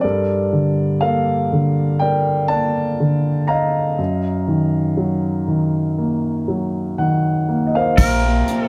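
Heartfelt and tender, this folk excerpt in a straight four opens with a dark, mellow concert grand piano carrying the melody alone, its long sustain ringing over chords that move from Gmadd9 to Ebmadd9/Gb in a moderate studio reverb. At 8.0 seconds, as the harmony settles on Bbsus2, the rest of the band joins: a twangy, fingerpicked pedal steel guitar adds a second line, a reedy hand-pumped harmonium holds sustained chords underneath, a woody pizzicato upright bass sounds a low note, and a soft brush drum kit brings a punchy kick, hi-hat and crash cymbal.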